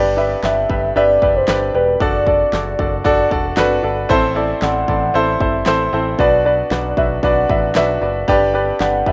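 A bright, up-front grand piano and a picked electric bass open this hopeful piano-driven pop fragment in G major at 115 BPM, moving through G, D/F#, Am and Bm before returning to G. At 0.4 seconds a produced electronic drum kit joins with a punchy kick, fat snare and handclaps, and at 0.5 seconds a velvety sawtooth synth lead enters with chorus and vibrato, carrying a smooth, mellow melody above the piano. A small room's moderate reverb and a rough home-demo mix give the sound a close, unpolished feel.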